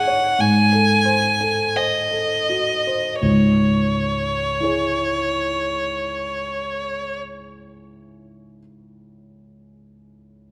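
A rich solo violin, smoothly and evenly bowed with vibrato, carries a yearning, elegiac melody up front over a dark, mellow concert grand piano with deep bass in this slow, rubato romantic classical duo in C# minor at 39-48 BPM and 4/4, tuned to A4 = 443 Hz and cut from a longer piece; it slows through the opening 3.2 seconds as a G#7b9 chord gives way to C#m, and the violin stops at 7.2 seconds while the piano plays on alone until 10.5 seconds, all set in a moderate concert hall reverb.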